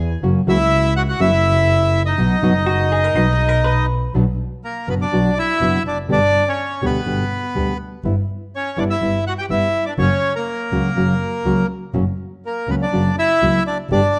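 Tango at 123 BPM in B major, dramatic and tense with a rubato feel, where a reedy, bright bandoneon carries the melody up front over a thumb-plucked nylon-string guitar and a dark, woody bowed double bass sliding with vibrato and portamento, while a clean, compressed hollow-body jazz guitar adds a brief second line from 2.7 to 4.1 seconds as the harmony turns from B to B minor, all set in a moderate recital hall reverb in a fragment cut from a longer piece.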